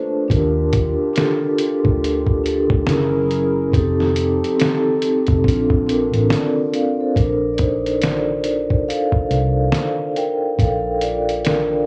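Dreamy and nostalgic, this lo-fi hip hop excerpt opens with up-front, ringing soft-mallet vibraphone accompaniment carrying a cassette-tape tint, over a hollow, flute-like pad with chorus sitting in the background. At 0.3 seconds a muffled, compressed sampler-style drum kit with a thumpy kick and 12-bit grit joins a dark, round, foam-muted electric bass, swinging through ninth chords. The pad stops at 7.1 seconds, and from 7.2 seconds the mellow vibraphone takes a solo in a dry, small-room sound.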